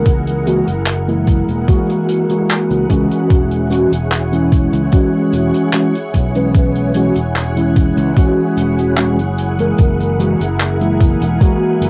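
Nostalgic and faded, this short vaporwave excerpt drifts at 74 BPM in a straight 4/4, set in E lydian and cut from a longer piece. A mellow, clean tine electric piano sits up front with the accompaniment, coloured by ensemble chorus, analog delay and cassette tape, while a silky string machine holds soft, slow-attack chords with a long release and the same chorused tape sheen. Beneath them a fretless electric bass sounds bright and growly, played direct and amped in its lowest register. A thumpy, sampler-style electronic kick sits up front, joined by a dry, mid-forward 70s kit of cabasa, handclaps and hi-hat, both placed in a small room. The harmony moves from F#9 to E69 at 3.3 seconds and back to F#9 at 9.4 seconds, with a band accent just before the change. Light reverb and the hazy character of a home cassette recording wrap the whole arrangement in a worn, dreamy glow.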